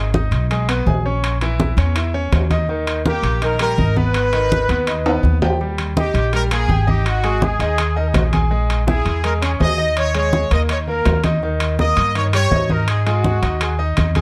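A straight, driving salsa groove in 4/4 gets underway at once, with congas of thin, low-tuned skin and ringing metal-shelled timbales setting a fiery, passionate pulse. A dark, woody upright bass with gut strings sits up front, its pizzicato lines thumpy and acoustic beneath a brilliant concert grand piano whose polished accompaniment carries deep bass and a present, sparkling top. At 3.1 seconds a punchy horn section enters with the melody, its clean pop-style ensemble tone touched by light vibrato. A brief drum fill at 5.1 seconds pushes the momentum forward as the harmony moves through minor chords, a diminished passage and suspended-to-dominant tension before settling on an open fifth. Close, detailed microphones and light reverb keep this passage from a longer piece vivid and immediate.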